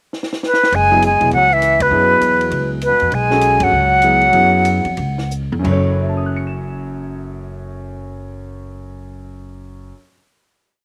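A swung 4/4 pulse at 172-201 BPM drives this short, complete modal jazz piece in F# dorian, hypnotic and cool in mood. A compact cocktail drum kit opens with a fill at 0.1 seconds, its dry, natural sound marked by dark cymbals, a high-tuned snare and a tight kick, with sticks on the ride cymbal; the kit sits low in the mix. The breathy silver concert flute carries a tongued, motif-based melody of call phrases, close-miked and up front with a straight tone, while a clear trombone adds a second line in octave doubling, with vibrato, scooped notes and a soft attack. A pizzicato upright bass with steel strings plays a woody, growly two-feel, and a warm grand piano comps in syncopated quartal voicings with a slapback echo. Band accents punctuate the theme and the tempo slows into a final F#m chord at 5.7 seconds. Bass and piano then ring on, the bass fading at 9.9 seconds and the piano at 10.1 seconds, all of it carrying tape saturation and little reverb.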